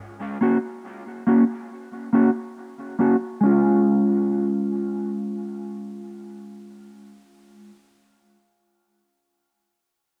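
Spacious and heavy, this brief reggae fragment from a longer piece moves at an unhurried 70 BPM with a swung sixteenth-note feel, carried by a single mellow electric guitar that enters at 0.4 seconds and plays through to 7.8 seconds. The guitar is dark, clean and fingered, sitting up front with analog chorus, a low-pass filter and dub echo, and a filter sweep colours its opening phrases as the harmony rests on Bb minor before shifting to Db over Ab at 3.4 seconds. Light reverb and a touch of studio ambience give the part a sense of room.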